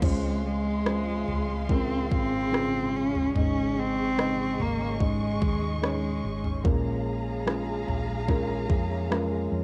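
Longing and heartbroken, this short fragment of a pop ballad moves at a slow 73 BPM in a straight 4/4, drifting from Dbmaj7 to Absus4 and then Bbm7. A single bowed cello carries the melody up front with a soft attack, vibrato and gliding portamento, its tone rich yet slightly nasal and boxy, before it stops at 6.4 seconds. Beneath it, a felt-muted upright piano offers mellow, intimate accompaniment with short sustain, while a studio string section holds smooth-topped sustained chords and a very quiet fingerpicked steel-string acoustic guitar adds full-bodied arpeggios. A hollow-body electric bass gives a round, punchy low end, and an electronic, layered pop drum kit, overdriven and re-recorded in a small room, brings a knocking kick, rim clicks, toms and crash cymbal until 9.3 seconds. The dry home recording on cassette gives the cello, piano, strings and drums a worn tape character.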